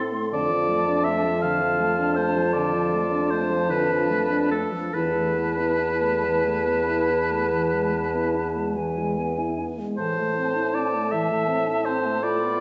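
This is a slow romantic classical movement for wind quintet in A minor, solemn and yearning, moving in a rubato 12/8 at roughly 46-57 beats per minute counted in dotted quarters, and cut from a longer piece. The oboe carries a second line up front with a punchy, smooth-topped vibrato tone and sits most prominently in the blend. Above it the concert flute holds the melody high in its range with an airy, hollow sound and crisp attack, heard close yet lower in level. The mellow French horn and a warm, smooth-topped clarinet in the background fill out the accompaniment, while a distant, roomy bassoon anchors the bass. All five play together across the full 12.6 seconds, moving through Dm/F, Esus4 and E before settling on A minor at 10.0 seconds. A recital hall reverb surrounds the ensemble, heard from further back in the room, with a softened, dark top end.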